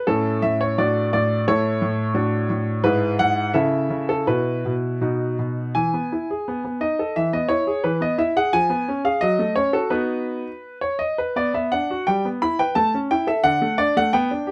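A close, detailed and dry recording places a bright baby grand piano up front, its brilliant, natural tone carrying a long sustain. This solo piano plays a playful, cheerful classical-period sonatina in 2/4 with a rubato feel, cut from a longer piece. A new section begins at 5.7 seconds, and the harmony moves to a fresh key centre at 11.3 seconds.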